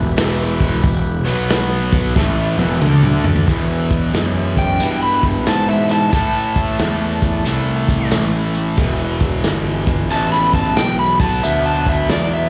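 A gritty, overdriven tonewheel organ holds very quiet sustained chords through a slow rotary speaker, with audible key click, as a bright, double-tracked distorted guitar riff and a growly fuzz bass open this smoky, heavy blues rock and southern rock excerpt in E minor. A vintage drum kit joins almost at once with a muffled, lo-fi sound, a punchy kick, a medium-tuned snare and a rolled-off top, and it plays a fill that leads out of the organ's brief passage at 3.5 seconds. The groove moves at 90 BPM in 4/4 with a loping swing, moving through Em, B5, D5, Am and Bm. At 4.6 seconds an overdriven slide guitar, played with fingerpicks and carrying a slapback echo, takes the melody high above the riff. The guitar, bass and drums sit up front, and the whole band is heard live through a club PA in a small, reverberant room, with the clip cut from a longer performance.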